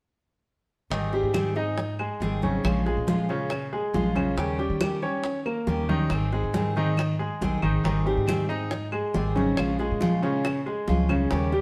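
Danceable and warm, this short cut from a longer Cuban son and guajira piece has a straight four-to-the-bar feel that invites movement. A bright baby grand piano sits up front with brilliant, long-sustaining arpeggios, beside a full-bodied jumbo steel-string acoustic guitar whose old strings give its picked accompaniment a warm, woody tone. Underneath, a pizzicato upright bass on gut strings adds a thumpy, woody low end. Congas played with hard hands bring a thick-skinned sound from the background, round low-tuned bongos sound close and dry, and compressed, saturated claves tick quietly, entering at 1.3 s while the rest of the band plays from 0.9 s to 11.6 s. The harmony moves through Abmaj7, Bbm7 and Eb7 before returning to Abmaj7 and Bbm7, and a moderate stone-room reverb gives the sense of a band playing live together in one space.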